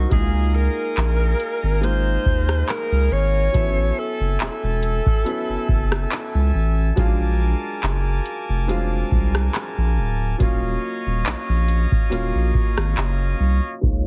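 Dreamy and smooth, this contemporary R&B passage, cut from a longer piece, moves at an unhurried pace with a light swing on the sixteenths. A booming analog drum machine sits up front with a deep kick, metallic hi-hats, handclaps and rim clicks, its tape-tinged sound re-recorded in a small room. A thick, saturated sine sub bass, also up front, holds the low end with a fast attack and sustained notes. A natural-sounding baby grand piano supplies accompaniment, while a reedy, airy accordion holds sustained chords above it throughout. A vintage alto saxophone with vibrato carries the pop-style solo melody until 6.5 seconds, then returns briefly at 13.8 seconds. The mix is dry and heavily compressed, with a filtered, radio-like sound.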